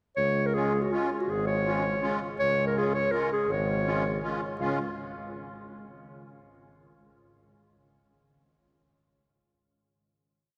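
A warm clarinet and a clear tuba open this short, festive alpine folk piece together at 0.2 s, in a jolly triple-metre dance-band style. The clarinet sits up front with a classical-style melody built from a short motif and shaped into balanced period phrases. The tuba, distant and roomy, supplies root-and-fifth bass notes on the main beats. A reedy, shimmering musette accordion joins at 0.5 s with off-beat triad chords in its middle register. The brief tune runs as a single section before settling onto a final chord at 4.6 s, all of it carried in the long, wet reverberation of a church or concert hall.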